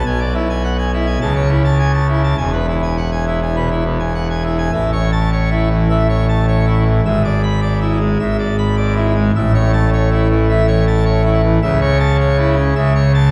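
A straight 4/4 pulse at 105 BPM drives this jubilant classical organ toccata in A major, tuned to A4 = 439 Hz, cut from a longer piece. A solo pipe organ plays throughout on full organ, its mixtures giving a brilliant, majestic sound with baroque voicing that spans from the deep register at E1 up to B5. The organ sits up front in the mix, surrounded by a wet scoring-stage reverb with a 1.6-second decay, while the overall production leans dark. The harmony circles between A and E chords, including inversions over B, C# and G#, and a new passage begins at 4.7 seconds that continues to the cut at 13.3 seconds.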